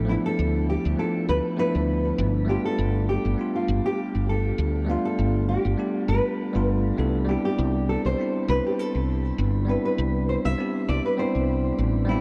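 A dark, plate-reverbed production frames this relaxed, smooth sunset chillout excerpt at 100 BPM with a light 16th-note swing, where a bell-like tine electric piano with shimmer reverb and delay plays Dm69, G7 and Cmaj9 chords over a growly, round fretless electric bass treated with ensemble chorus, while a thumb-plucked nylon-string guitar, also bathed in shimmer reverb and delay, carries the classical-toned melody from 0.1 seconds.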